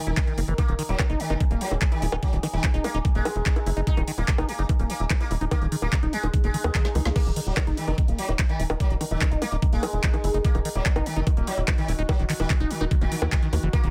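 A buzzing, plectrum-plucked sitar carries the melody from the very start of this psychedelic trance excerpt, its sympathetic strings shimmering through phaser, delay and sidechain pumping. Beneath it, an overdriven electronic kick knocks up front in straight 4/4, joined by a layered drum kit with a woody snare, bright hats, handclaps, bongos and crash cymbal, also overdriven, with a drum fill at 6.7 seconds. A tight, punchy sequencer bass drives the low end with a mellow filter pluck, while a squelchy, resonant acid bass riff adds smooth filter sweeps through phaser and dub echo. In the background, a slow-attack drone sustains chords with moving overtones, treated with chorus, its own reverb and sidechain pumping. A very quiet electronic swell surfaces briefly around 6.6 seconds, all set in a digital ambience that keeps the psychedelic mood driving.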